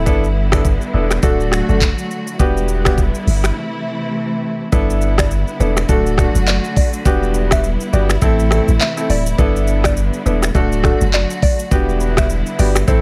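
Afrobeats with a sunny, joyful lift, this short clip from a longer piece moves with a gentle sixteenth-note swing over a looping progression of G6, D, Em7 and Am. An electronic afro-pop drum kit sits up front, its knocking kick and smooth hats joined by finger snaps, handclaps, rim clicks and shaker, while a deep sine sub bass with a pitch-drop attack punches alongside it. A clear, present grand piano carries the accompaniment, and a lush, distant string section holds bowed chords with vibrato beneath. After a brief break from 3.6 to 4.7 seconds, the second section opens, and at 5.2 seconds a woody, mellow FM pluck enters in the background with the melody, colored by chorus, phaser and digital delay. A digital ambience surrounds the mix.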